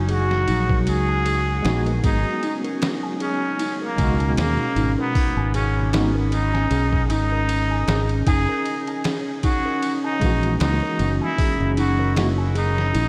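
A nasal, breathy trumpet with a straight mute carries an intimate, tape-echoed melody up front in this melancholic, cinematic trip hop excerpt at 77 BPM in G# minor, over a warm, direct fingered electric bass, a pitched-down, muffled sampler-style drum kit with a thumpy kick, a deep, moody analog pad holding chorused chords in the background, a tinkling, slightly out-of-tune music box playing arpeggios through analog delay, and a worn, lightly overdriven tine electric piano with tremolo and 12-bit grit that enters at 1.6 seconds, all set in a dreamy mix drenched in huge ambient reverb.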